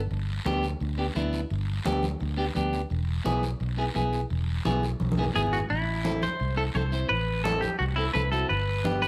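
Passionate and fiery, this short cut from a longer cumbia piece in A minor moves at 172 BPM in a straight 4/4, with a dark, round, foam-muted fingered electric bass up front, raspy close guiro, and soft-handed congas sitting distant in a large room behind them. A compressed, twangy clean electric guitar carries the accompaniment from 0.5 seconds, and during a drum fill a second bright picked guitar takes the melody at 5.4 seconds, bathed in spring reverb and slapback echo. The chords move from G to E, then land on A minor at 5.7 seconds for the second section, with light reverb, close, detailed microphones and lossy compression artefacts colouring the sound.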